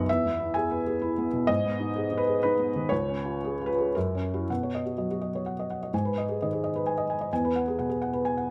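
A rubato 3/4 pulse drifts between 107 and 133 BPM in this intimate, peaceful fragment of neoclassical minimalist piano, cut from a longer piece. A felt-muted upright piano plays alone from 0.0 to 8.5 s, its mellow, hushed tone sitting up front with audible action noise, ranging from B1 to G#5 through E, G#m, C# and F#7 before settling into B major at 4.5 s on Badd9, G#m and Eadd9. A moderate stone room reverb lends a gentle sense of space, and the instrument is tuned slightly above standard pitch, at A4 = 441 Hz.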